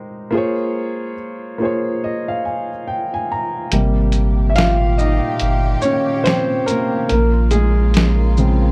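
A woody upright piano with audible action noise and a cassette-tape haze opens this melancholic lo-fi hip hop excerpt at 71 BPM, playing alone over Bbm7 until 3.7 s. There, a round sine sub bass, lush bowed strings with vibrato, and a muffled, compressed sampler-style kit of hi-hat, shaker and snare join as the piano takes a solo over Abmaj9 before returning to Bbm7. The swung sixteenths, light reverb and dark production give the piece its hazy feel.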